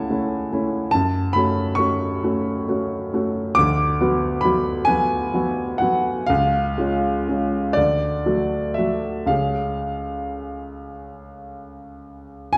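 Yearning and mournful, this short excerpt from a romantic classical nocturne unfolds for solo piano in a slow, rubato 12/8, its dotted-quarter pulse hovering between 36 and 49 BPM. A smooth, vintage-toned grand piano sits up front and carries the whole passage from 0.0 to 12.6 seconds, ranging from C#2 up to D6. The harmony opens on A over C# before settling into F# minor at 0.9 seconds, then moves through B minor over D toward C# at 6.3 seconds, touches D, and returns to C#. The instrument is slightly sharp of standard pitch, tuned to A4 = 441 Hz. A recital hall's reverb, lingering for about 1.4 seconds, surrounds the piano in a dark, warm production.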